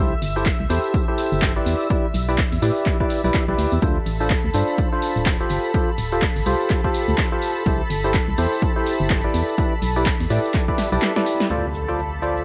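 A cassette haze and light digital ambience wrap this bittersweet, soulful piano house fragment, cut from a longer piece and swinging on its sixteenths. Up front, a hollow, mellow organ stab with a faint noise layer plays the riff through lush chorus and tape echo, while a dark, percussive FM bass with an organ-like tone holds the low end, both pumping against the kick. Behind them, a silky, detuned string pad with slow attack and long release sustains bright chords colored by ensemble chorus and gritty 12-bit sampler texture, moving between C6, Em7 and Dm7. A punchy analog drum machine brings overdriven snare, handclaps and hi-hat in a short room, along with a shaker, and a dry tambourine sits quietly in the background. The overdriven electronic kick enters at 0.5 seconds and drops out at 10.8 seconds for a drum fill, and a distant electronic impact lands at 11.5 seconds as the chords return to Dm7.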